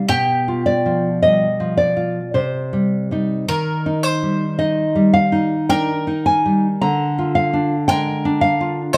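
A serene, lyrical romantic duo in a rubato 3/4 at roughly 52-57 BPM, tuned to A4 = 441 Hz, in which a bright, double-strung bowl-back mandolin sings a picked melody between G4 and C5 while a full-bodied, deep nylon-string guitar sits up front and louder with fingerpicked accompaniment, both playing live in one room with moderate large studio reverb across a passage cut from a longer piece that moves through G7/B, Cm, Eb and Bb7/D.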